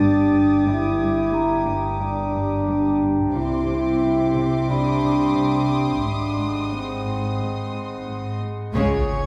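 Mysterious and ominous, this cinematic fragment moves at 89 BPM in 4/4, with a dark French horn section up front holding sustained chords over a glassy, ethereal glass harmonica, a rich cello section riff, and deep bass lines from a distant studio cello section and a double bass section, all over chords moving from Gm to C to G#7. A metallic, ringing vibraphone in the background and a close, floating, sul tasto violin section add texture, all set in a wet scoring stage reverb heard from further back in the room. At 8.7 seconds a huge, bright sub drop hits alongside a woody, lush viola section, and a moment later the violins take up a brief melody on C#5 before the cut at 9.3 seconds.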